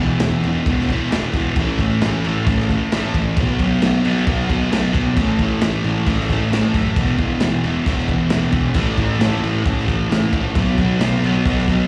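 A fuzz guitar sits up front, double-tracked and compressed, playing a distorted, picked riff with a slapback echo over power chords that move from E5 to A5 and B5 and back again. This is raw, swaggering garage rock at 134 BPM in a straight 4/4, a short cut from a longer piece that runs just under 12 seconds. Beneath the guitar, a picked electric bass adds a round, overdriven low end, its dark fuzz tone kept in the background. The crunchy breakbeat drum kit comes in at 0.2 s with a tight kick, a medium-tuned snare and crash cymbal, its sound saturated and gritty with dark cymbals and a rolled-off top, as if caught in a small room. The whole performance is heard as a live gig through the venue's PA, with a light club reverb around it.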